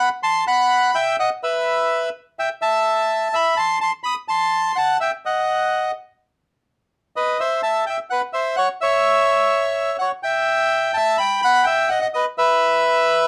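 A rubato tango pulse around 126 BPM in 4/4 carries this playful, elegant excerpt in E harmonic minor, where a reedy, smooth solo bandoneon sits up front from B4 to D#6, moving through chords such as Am, D#dim and C#madd11 before landing on B, with the harmony falling away at 12.4 seconds, all within a dark production and moderate studio ambience.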